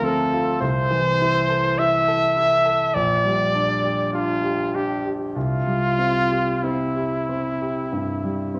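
In a rubato 4/4 pulse of roughly 46-53 BPM, this serene romantic classical duo sets a clear, up-front trumpet melody with light vibrato and a smooth top over an intimate concert grand piano accompaniment with deep bass and audible action noise, moving from Dm7 through Am/C and Gm/Bb to C, all heard through a moderate recital hall reverb and the worn, warbly pitch drift of old cassette tape in this short cut from a longer piece.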